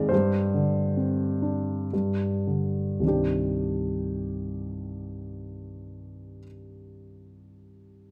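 Classical, lyrical solo piano in C minor, this short passage from a longer piece moves in a rubato 3/4 between 52 and 75 BPM, with a bittersweet, cool mood. A warm, up-front grand piano with short sustain spans C2 to F5, slowing over its opening 3.0 seconds through Gsus4 and G5 before settling onto Cmadd9 as a new section begins. Close, detailed miking and light reverb keep the instrument intimate and clear.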